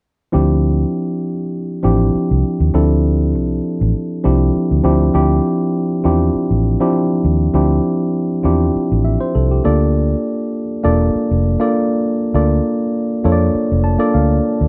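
Lush 1970s-style soul in D minor at 100 BPM with a gentle 16th-note swing, this bittersweet, smooth excerpt from a longer piece pairs a worn, slightly out-of-tune tine electric piano through a combo amp with a dark, round, foam-muted fingered electric bass, both up front in a dry, close studio sound, moving from Dm11 to Bbmaj7 at 9.6 seconds before the piano adds a fill from 13.5 to 14.7 seconds.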